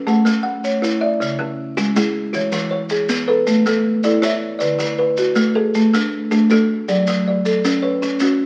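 A mellow, round marimba played with soft mallets sits up front, spinning arpeggios from C#3 to F#5 alongside a bright, hollow-bodied kalimba with a short thumbnail pluck in the same range, in a rippling, warm southern African traditional piece built on an mbira-style interlocking cycle at 106 BPM in 12/8, in A major. Grainy maracas sound distant, as if in a large room, while the chords move from A through C#m, E and D to F#m. Moderate studio reverb and the crackle of a very old 78 rpm record colour this short fragment, cut from a longer piece and lasting about 8.5 seconds.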